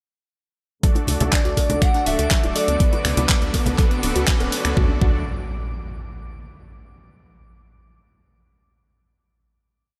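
A compact, polished mix with a light reverb opens this short, complete progressive house piece at 122 BPM, uplifting and euphoric in mood, built as one quick build-up from 0.8 s that resolves onto a held final chord at 4.8 s. Driving it are an overdriven, knocking four-on-the-floor kick placed up front, tape-warm programmed hats, claps and snaps, a very quiet looped brush breakbeat with a high-tuned snare, and a dry, close tribal loop of bongos, congas and cowbell pumping in the background. A tight, saturated sequencer bass gallops in sixteenths, while a soft, round pluck repeats a riff over a pedal note and a smooth supersaw holds chords with syncopated pushes, both pumping and trailed by dub echo. Above them a bright, biting string section sustains a very quiet pad, and a twinkling granular shimmer holds a high note from 1.6 s. From 1.3 s to 3.5 s an expressive portamento lead with vibrato and cassette-tape colour sings hook phrases, doubled in unison by a pure FM bell, and from 2.9 s a riser and impact sweep the piece into its final chord.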